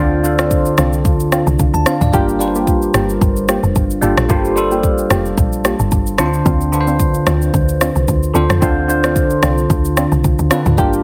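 An amapiano groove opens with a bell-like tine electric piano, bright and clean with a phaser, alongside a deep, mellow chord stab touched with chorus and digital delay and a woody log drum bass that is punchy and percussive with a fast attack and decaying tail. The deep house drum kit joins at 0.2 seconds, its deep kick up front and layered with rim click, shaker and toms, all at 111 BPM in 4/4 with a 55% swing on the sixteenths. The mood is deep and late-night, moving from Dm7 to Gm7 at 2.1 seconds and back to Dm7 at 6.2 seconds. The chord stab has a soft, nasal, detuned character with a filter sweep that gives it an evolving, dark color. Light reverb and digital ambience surround the parts, while a heavily compressed radio-like sound gives this fragment of a longer piece a dense, pressed feel.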